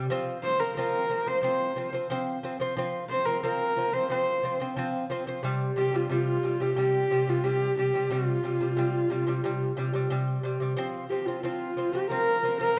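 Mongolian folk at a steady 90 BPM, this proud, vast cut from a longer piece opens with a bright, delicate fingerpicked lute on double gut strings spinning arpeggios, joined at 0.4 seconds by a dark, husky horsehead fiddle up front, its bowed woody melody carrying light vibrato and portamento. At 11.1 seconds, shortly after a new section begins, a very quiet low xiao adds an airy, tongued second line with its own vibrato. A moderate recital hall reverb gives the dark, warm production a sense of open space.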